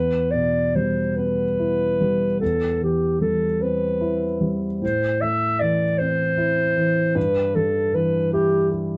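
Melancholic and elegiac, this brief fragment of a romantic classical duo in E minor drifts in a rubato 6/8 at roughly 47-52 BPM, as a mellow, distant clarinet sings the melody between G4 and E5 until 8.7 seconds over a dark baby grand piano whose long-sustaining accompaniment moves from Em through C/E and Am to Em/G, both sitting up front in a light reverb with a dark, warm production.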